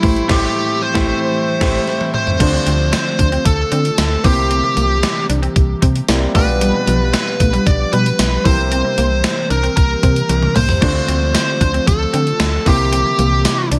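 Lightly reverberant and moody, this dramatic 1980s-style pop excerpt in D minor at 114 BPM puts a distorted, bluesy overdriven lead guitar with tape echo up front on the melody, over a thumpy gated digital drum machine with its gated-reverb snare and a punchy, round FM bass, while a clear concert grand piano accompanies, a twangy, slightly broken-up electric guitar riff with ensemble chorus sits in the background beside a glassy, ethereal FM pad holding sustained chords, and drum fills arrive at 1.9 and 10.3 seconds as the harmony moves from Am7 to Dm7 at 2.4 seconds.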